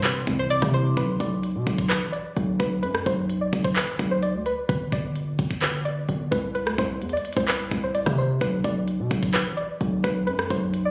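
Heard through a phone in a club-like room with vinyl crackle and compression, this brooding, melancholic half-time trap excerpt at 129 BPM in B phrygian sets a twangy, string-like resonator pluck melody with chorus, low-pass filtering and digital delay over a heavy, punchy 808-style bass and an up-front electronic trap kit of knocking kick, crisp hi-hats, handclaps and rim clicks, while a pure FM synth bell and dark, muted felt-like synth keys sound only in the first 1.0 seconds before the harmony moves from B minor through G5 to a chordless stretch at 6.6 seconds and back to B minor.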